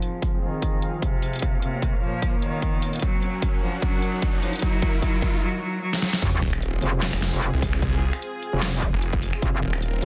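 A dense, heavily limited mix with light reverb carries this menacing, heavy wobble dubstep cut at 150 BPM in half-time, where a clear bowed cello melody with dub echo and a lush supersaw pad both pass through filter sweeps over a punchy, overdriven electronic kick, a deep-snared dubstep kit and a background riser and sub drop, until the drop at 6.2 seconds unleashes a metallic, chorused wobble bass and a growling, distorted saw bass.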